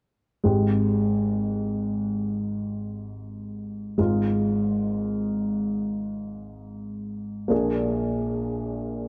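Played in free time, this short pop passage drifts along in an open, unmeasured way, cut from a longer piece. A single baby grand piano carries the accompaniment from 0.4 s to 9.1 s, ranging from Ab1 up to Ab4 in the key of Ab major. Its tone is dark and mellow, with notes that fade quickly and a placement that sits up front and close to the listener. The harmony moves from Abmaj7 to Fm7/Ab around 4.0 s and then to Bb7 around 7.5 s. A light reverb softens the space around the instrument, and the overall mood is tender and quietly hopeful.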